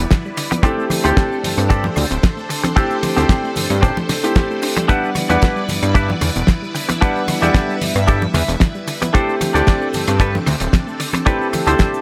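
This nu-disco excerpt opens with a clear, boxy baby grand piano carrying dub echo, a lush string machine with phaser, ensemble chorus and sidechain pumping, a very quiet warbling pluck playing arpeggios, and a fat, saturated analog bass with an evolving filter sweep up front, all moving between Em7 and D7sus4. At 0.1 seconds a dry, dark 70s drum kit with a fat snare, hi-hat, rim click and shaker comes in alongside a tight, up-front kick, with cabasa and congas sitting in the background. At 0.4 seconds a bright, twangy direct-recorded clean guitar joins with a riff through subtle chorus and dub echo, giving the 113 BPM groove, lightly swung on 16ths, a cosmic, sleek feel.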